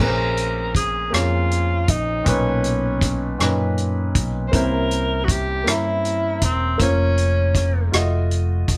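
A band playing live together in one room, lit by a moderate studio reverb, gives this slow, fervent and soulful gospel cut from a longer piece its close, natural sound, in 6/8 at 53 BPM in Bb minor. Up front, a breathy tenor saxophone carries the melody with vibrato and a vintage, subtoned jazz tone until 7.9 seconds, over a present grand piano accompaniment and a dark, round, punchy fingered electric bass. A dry, mid-forward soul drum kit with a tight kick and rolled-off top enters at 0.4 seconds on hi-hat, kick drum and rim click, while the chords move from Bbm9 through Bmaj9 and C7b9 to a closing F7b9.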